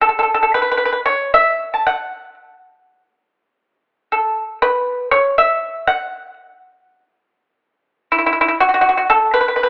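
A solo pipa, plucked with fingerpicks and sounding percussive, dry and up front, carries this elegant, pastoral fragment of traditional Chinese music, cut from a longer piece, in A gong mode at a free, rubato 56-62 BPM in 4/4, ranging from E4 to A5 over 9.7 seconds within a moderate recital hall reverb and a telephone-like sound.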